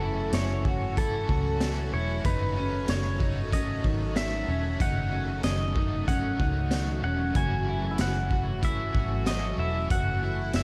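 A straight, steady 4/4 pulse comes from a raw garage drum kit entering at 0.3 seconds, its punchy kick, high-tuned snare, hi-hat and tambourine sounding gritty and saturated in a small room, while a vintage foam-muted fingered bass sits low and round beneath it. This is a hazy, ethereal dream pop fragment, cut from a longer piece, built on a slow drift from F#m7 to D#m7b5 and back. Over the top, a clean, compressed pedal steel guitar carries the melody with fingerpicked slides and volume swells, trailed by tape echo. Shimmering sawtooth string-machine violins hold soft-attack chords with ensemble chorus, and a dark, slightly broken-up electric guitar picks arpeggios through lush chorus and tape echo. Further back, a bright overdriven guitar adds tremolo-shaded accompaniment with a hint of chorus, and at 7.9 seconds a very quiet kora joins with crisp, ringing fingerpicked notes. Light reverb and a dark, warm production wrap the whole mix in a soft haze.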